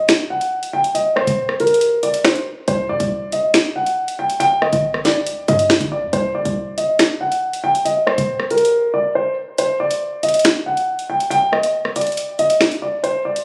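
Tense and dark, this half-time drill cut moves over a 4/4 pulse. A mellow baby grand piano carries the melody, up front and intimate, with audible action noise, short sustain and a low-pass filter softening its tone. A punchy, tight 808-style bass with a sine body, a noise layer, a fast attack and a decaying envelope sits beneath it until 8.7 seconds, where a brief silent gap opens before the second section begins at 9.6 seconds. The electronic drill kit of finger snaps, metallic hi-hats, rim clicks and a sharp snare sits up front with tape-tinged, 12-bit sampler grit. Harmony circles Cm and Cmadd9 before falling away at the section change. A moderate plate reverb and a phone recording in the room shape the fragment's sound.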